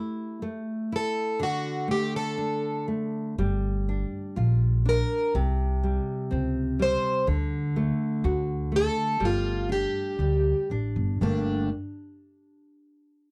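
Dry and close, this recording has the intimate, up-front feel of a 1970s studio, with little room sound around the players. It is a mournful, longing fado-style ballad in G minor, moving at a slow 61 BPM in 2/4 with a freely rubato feel, cut from a longer piece. A full-bodied nylon-string guitar opens alone, fingerpicked with audible finger squeak, laying down the accompaniment through chords such as Gm7, C5 and D. At 1.0 seconds a plugged-in twelve-string acoustic guitar enters with the picked melody, its boxy, parlour-like tone shimmering through octave-doubled strings. A woody pizzicato upright bass joins at 3.4 seconds, its steel strings giving a growly low line beneath the guitars. The three parts carry on together until the passage breaks off, settling toward a Gmadd9 chord.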